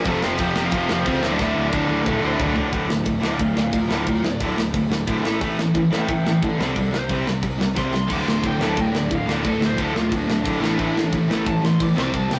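A dark, lo-fi lead guitar pushed through a small cranked amp carries the melody and takes a solo from 2.7 seconds to the end of this angry, raw punk rock cut, which runs at 179 BPM in 4/4 with a straight feel in D minor. Underneath, a bright, tight distorted guitar sits up front on the riff, backed by a compressed distorted electric guitar in the background and a double-tracked overdriven guitar with a biting edge that drops out at 2.6 seconds and returns at 8.1 seconds. A growly fuzz bass adds overdriven low end from the back of the mix. The tight metal drum kit, with bright cymbals, a medium-tuned snare and a tight kick, plays fills from 1.4 to 2.7 seconds and again just before 8.1 seconds. The chords move from F and D5 into Dm, A5 and C5, all in a rough rehearsal-room sound with light reverb and warm saturation.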